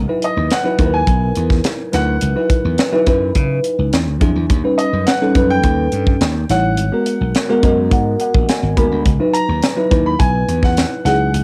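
Bittersweet and slick, this polished 1980s jazz-funk pop excerpt moves at 105 BPM in a straight 4/4, centred on C# dorian with lush extended chords running from C#m11 through altered D# dominants to G#m9. A bright, punchy slap bass and a crisp fusion drum kit with a high-tuned snare and punchy kick sit up front, while a bell-like, sparkling FM electric piano with lush chorus and cassette tape colour carries the accompaniment and plays a fill from 7.3 to 9.1 seconds. Above them a clear, open baby grand piano sings the melody through plate reverb, and a jingly tambourine, very quiet and dry, joins at 9.6 seconds.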